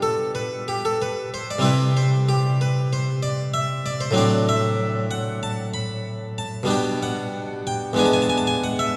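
A solo harpsichord opens at once on a G/B chord, carrying this brief, radiant passage from a baroque-style classical suite movement. Its French-style tone is bright, full and plucked, drawn from one set of strings, and it sits close and up front. The playing has a dance-like lilt in four, shaped with a free, rubato feel. The harmony moves from G/B to C, then to D7/A at 4.2 seconds, back to G/B, and closes on E7 at 8.0 seconds. Around the instrument, a long, wet cathedral reverb gives a sense of distance and space, as if the listener stands further back in the hall. The clip runs 9.0 seconds, cut from a longer piece.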